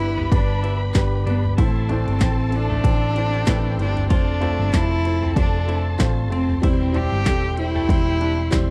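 An intimate, airy sul tasto cello carries the hopeful, anthemic melody in this piano-driven pop excerpt at 95 BPM in C major, over a lightly swung 4/4 beat from a punchy analog drum machine with handclaps, kick, snare, ride and toms, a round, amped hollow-body bass up front, a woody, mellow upright piano, a lush, dark violin section with portamento in the background, a twangy, compressed twelve-string electric guitar riff entering at 0.2 seconds, and very quiet rotary-speaker tonewheel organ chords, all in a dry, close 1970s-style studio sound moving from G through A minor and F to C over E.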